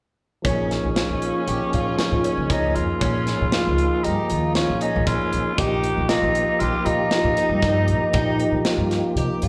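A growling, raspy alto saxophone sits up front over a shimmering twelve-string acoustic guitar's picked arpeggios, a clean tonewheel organ with key click and slow rotary speaker, woody pizzicato upright bass and a tight metal drum kit, all playing live in one room with wet studio reverb in this tense, intricate progressive instrumental in 5/4, moving from Bbm7 to Eb/Bb at 5.6 seconds.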